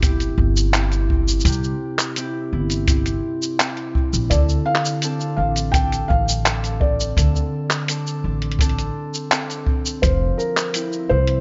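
A woody, thumpy pizzicato upright bass on gut strings sits up front in this intimate, autumnal folktronica excerpt, alongside fingerpicked, ringing concert harp arpeggios with delay and a straight groove of a boomy brushed kick plus a compressed, pitched-down, muffled sampler-style kit of cabasa, handclaps and hi-hat. At 4.3 seconds a soft, boxy, felt-muted upright piano enters with a mellow melody, also touched by delay, as the chords move from C to Dm7 and on to Fmaj7, while the kick stops at 10.2 seconds. The sound is dark and close, set in a small room reverb.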